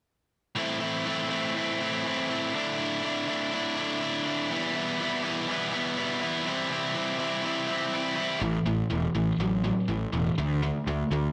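Gritty and driving, this short rock excerpt moves at 122 BPM in a straight 4/4, centred on A minor and tuned slightly sharp, with A4 at 441 Hz. A biting overdriven guitar opens at 0.6 s, playing a picked riff up front with a warm, overdriven edge over chords that move from Am through Dsus2 and Em to C. At 8.4 s the arrangement thickens as a cranked stack guitar joins with a bright, picked riff set in the background. Alongside it, a fuzz fingered electric bass enters up front with a punchy, direct-and-amped tone, as the harmony shifts to A5 and then D5. The whole passage sits in a moderate echo chamber reverb that gives the raw tones a sense of space.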